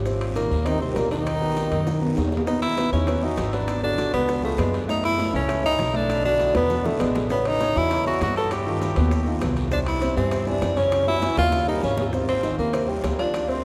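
Bathed in a wet cathedral reverb, this danceable, sophisticated Afro-Cuban jazz excerpt at 199 BPM sets a clear, close-miked tenor saxophone melody up front over thumpy, woody pizzicato upright bass and a worn, slightly detuned upright piano with audible action noise, while quiet low-tuned bongos, ringing metal-shell timbales, raspy guiro and grainy maracas fill in the background; a mellow, scooped trombone line appears only from 0.4 to 2.1 seconds, drum fills punctuate the changes, and the saxophone takes a solo at 12.1 seconds.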